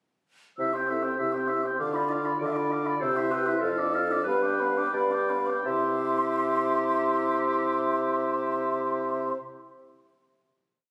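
Cheerful and spirited, this short classical-period movement for wind quintet in 2/4 is complete in under ten seconds, with the whole ensemble entering together at 0.6 s. The airy, hollow concert flute carries the melody with vibrato and a soft attack, rocking between two notes before settling into sustained chords. The oboe, with light vibrato and a distant, roomy presence, plays a second line built on the same rocking two-note figure, while the French horn shares that figure in the accompaniment. The soft-edged clarinet, also set back in the room, adds its own melodic strand, and the mellow bassoon sits up front with light vibrato, marking the bass on the beats before holding it under the chords. The music slows from 2.4 s and reaches a final chord at 5.7 s, heard through a moderate recital hall reverb in a phone recording made in the room.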